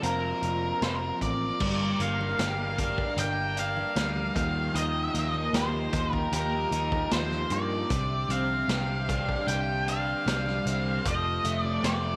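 A dark, up-front octave-fuzz lead guitar with slapback echo sings its melody over a crunchy, double-tracked overdriven guitar riff swirling with phaser, a round, foam-muted picked bass, a buzzy combo organ holding vibrato-tinged chords in the background, and a punchy vintage drum kit with dusky cymbals, while very quiet hard-handed congas slip in at 2.0 seconds, giving this trippy, hypnotic psychedelic rock fragment its slow, steady pull through Gm, Ebadd9 and Csus2 in a lightly reverberant studio room.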